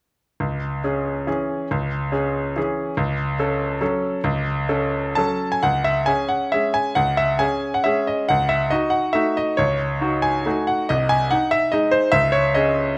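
Set in a lilting 3/4 with a supple rubato, this classical piano waltz moves between 121 and 153 BPM, its pulse stretching and easing as the phrases breathe. Cast in C# minor, it carries an elegant, bittersweet mood, opening on C# minor and F# minor harmonies before the second section begins around 5.6 seconds, where the harmony leans toward half-diminished colour and a G# chord over its third. A solo grand piano carries everything, spanning from B#1 up to A5 with a brilliant, bright tone that sits present and up front. Close, detailed microphones give the playing an intimate feel, catching the audible action noise of the instrument. A moderate recital hall reverb lends a gentle sense of space around the piano in this excerpt cut from a longer piece, which closes on a bare C# sonority near 12.1 seconds.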